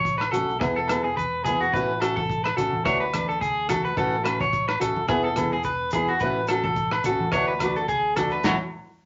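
Bathed in a wet club reverb with a dulled high end, this joyful, danceable highlife guitar band excerpt swings along on a twangy, slightly broken-up electric guitar playing up-front arpeggios beside a boxy, dark fingerpicked acoustic guitar with audible finger squeak, over a round fingered electric bass, a muffled, lo-fi soul drum kit with a tight kick and rim clicks, and background layers of ringing agogo bells, low-tuned congas and grainy maracas, before a band accent lands at 8.5 seconds.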